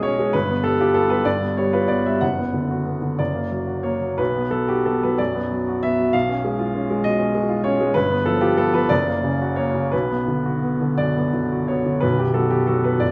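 A clear, open baby grand piano sits up front in moderate recital-hall reverb, its long sustain ringing through this stormy, bittersweet romantic character piece in a rubato 6/8, cut from a longer work, as chords such as G7, Bm/F# and F# circle back to B minor before settling on a bare B5 at 12.0 seconds.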